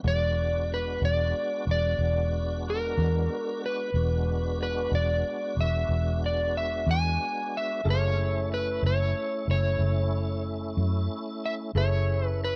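A slightly broken-up, fingered slide guitar carries the melody up front in this laid-back, rollicking 12/8 blues excerpt, over a round, foam-muted electric bass and lightly overdriven tonewheel organ chords turning through a slow rotary speaker, while a mellow, woody upright piano with audible action noise slips in at 7.8 seconds in the background, all in a dry, close sound.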